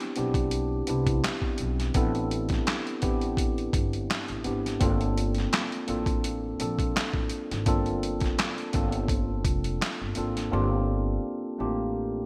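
R&B with a neo-soul lean, this smooth, introspective excerpt rides a lightly swung groove and drifts from Am11 to Gm11 at 4.8 seconds. A mellow tine electric piano, clean and up front with a lush chorus, carries the harmony, while a gritty, pitched-down boom bap drum kit with a thumpy kick, medium-tuned snare, hi-hat and handclaps punches through gated reverb until 10.5 seconds. An acoustic upright bass, woody and growly with steel strings, plays pizzicato from 0.2 seconds, all framed by light digital ambience and a bright 1980s-style sheen.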